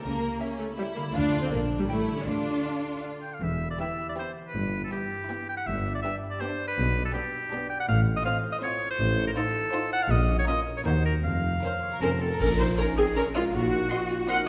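Set in a straight-feel waltz metre, this short cut from a longer cinematic cue has a playful, whimsical and mischievous character, with minor-key harmony that keeps shifting to new centres. A viola section sits up front with soft, expressive bowing, while two violin sections carry the melody and a second line, and a ringing, fingerpicked concert harp spins arpeggios in the background. Cello and double bass sections anchor the bass with a focused, rich tone. A bright solo oboe joins at 3.2 s, and a tuba soon adds to the bass from the back of the mix. Dark cymbals, a cymbal swell and concert bass drum arrive at 10.1 s, and at 12.0 s a mellow clarinet and an airy large flute ensemble add further lines. A French horn section then enters on a brief ensemble accent at 12.4 s to hold sustained chords. The whole piece sits in the generous reverb of a scoring stage.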